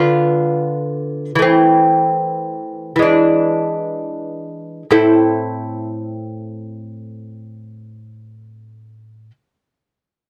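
Grave and flowing, this short passage cut from a longer classical piece is a baroque-style dance for solo lute in A minor, played in free time with the tuning set at A4 = 438 Hz. The lute sits up front, its fingerpicked gut strings sounding warm and delicate, with double courses and some octave-doubled strings adding fullness across a range from A2 to C5. The opening phrase slows down over its first 4.9 seconds, moving through Bdim/D, Am/E and E7 before settling on A minor. A second phrase follows from 4.9 to 8.7 seconds, keeping the same grave character. Light reverb gives the acoustic instrument a gentle sense of space.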